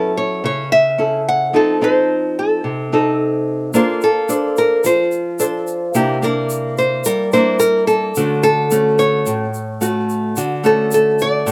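This bossa nova passage, cut from a longer piece, moves at a relaxed, sophisticated 109 BPM in straight 4/4, tuned to A4 = 436 Hz. Two fingerpicked nylon-string guitars sit up front from 0.0 seconds: one carries the melody between F4 and F#5, while the other supplies accompaniment from A2 to C5. Both have a small, warm acoustic tone touched by slapback echo, with the melody guitar slightly louder. At 3.7 seconds a grainy, bright egg shaker enters quietly, carrying a small-room character of its own. The harmony moves through F#m7, F7, Bbmaj9 and C9 before settling on Dmaj7, all within a single section that runs to 11.5 seconds. Recorded outdoors and free of room sound, the mix carries only a light reverb.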